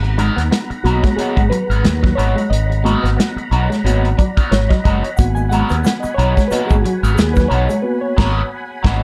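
Funk at 90 BPM in G# minor, hypnotic and cool, where a reedy, worn electric piano solos in overdriven stabs with fast tremolo and tape echo over a sustained G#m9 organ chord turning on a slow rotary speaker, a twangy picked guitar riff, a second compressed guitar comping through wah, round fretless bass up front, a tight small-room soul kit with dark cymbals, and a grainy tube shaker in the background from 5.2 to 7.8 seconds before a band accent at 7.8 seconds, all in a dark production with light reverb.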